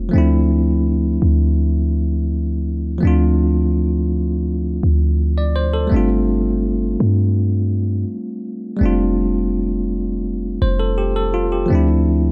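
A deep, boomy 808-style bass with a dark sine tone sits up front beneath a bell-like, bright tine electric piano in this moody, longing contemporary R&B fragment at 83 BPM in D minor, the two parts moving through Dm9, G7sus4 and F69 under light reverb across its 12.3 seconds.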